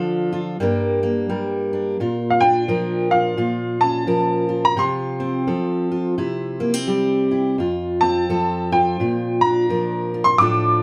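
A clear upright piano carries the melody from the start, its woody, vintage tone sitting up front in a high register between F5 and D6. Beneath it, a fingerpicked steel-string dreadnought guitar supplies a bright, full-bodied accompaniment that ranges from F2 to Bb4 and is also placed close. This gentle, nostalgic acoustic folk piece moves at 86 BPM in 4/4 with a lightly swung eighth-note feel, tuned to A4 = 444 Hz. The harmony runs from Dm through Gm and Bb to a darkening Bbm, then settles via F/C and C onto F before reaching Bb at 9.0 seconds. A moderate studio ambience gives the duo a natural sense of room, and the passage, lifted from a longer piece, ends at 10.8 seconds.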